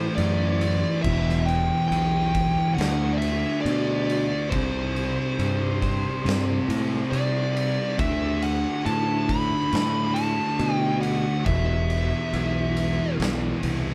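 Stoner and doom metal at a slow 69 BPM in 4/4, brooding and ominous, cut from a longer piece and played as a live band in one room with light reverb, moving from Am and Em through heavy D5, C5 and E5 power chords. A compressed, dark fuzz lead guitar carries the melody up front until 13.2 seconds, while two thick fuzz guitars churn out a picked riff in the background and a growling, punchy fingered bass, bright and overdriven, sits prominently beneath. An oversized low-tuned acoustic kit enters at 0.2 seconds with a boomy kick, dark cymbals and a gritty, pumping big-room sound, as a very quiet vintage string machine of violas holds mellow, sawtooth chords with a soft attack and ensemble chorus.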